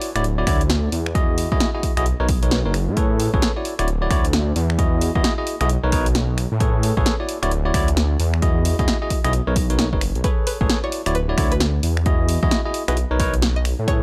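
Sunny and soulful, this two-step UK garage excerpt moves at 132 BPM in 4/4 with a swung sixteenth-note feel. A bell-like tine electric piano plays chord stabs through tape echo from the start, cycling through lush major-ninth chords such as Dmaj9, Emaj9, Bmaj9 and Amaj9. An overdriven analog drum machine supplies finger snaps, hi-hat and a punchy snare, joined at 0.5 seconds by a punchy, overdriven electronic kick. The dark detuned saw bass enters at 0.2 seconds and sits up front, deep and rumbling with a beating, tube-saturated edge. At 10.2 seconds a twangy, string-like resonator pluck slips in behind the mix, coloured by chorus and tape echo. The sound is dry and gritty, with little reverb and a raw hardware character.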